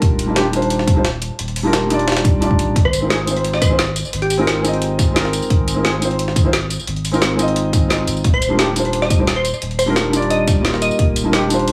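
Uplifting and lush, this liquid drum and bass excerpt is built on a soft, felt-muted upright piano set up front, its dark, intimate chords carrying audible action noise and a dub echo, over a round sine sub bass and an Ebmaj9 to Ab6 progression. Three layered drum parts drive it: a punchy, tape-warm electronic kick, a garage kit with a woody snare and metallic hats and tambourine, and a gritty, pitched-up jungle sampler kit with high-passed hats and a high-tuned snare sitting in the background. A glassy, crystalline wavetable pluck with chorus, 12-bit sampler grit and tape echo adds melodic phrases from 2.9 seconds and again from 8.3 seconds, all in a light reverb.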